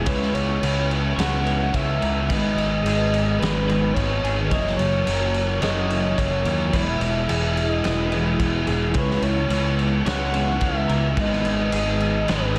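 Shoegaze and dream pop rock at 108 BPM, wistful and hazy, where a growling overdriven fingered bass and a thick, distorted fuzz guitar with analog chorus anchor a very quiet overdriven semi-hollow guitar riff, a twangy, compressed twelve-string electric arpeggiating through lush chorus and tape echo, and a phased, ensemble-chorused string-machine cello pad sustaining C#m7, G#m, F#7 and Emaj7 chords, while a breathy, flute-like synth lead with tremolo, vibrato and tape echo sings the melody over a punchy, up-front garage drum kit, all set in a moderate concert-hall reverb.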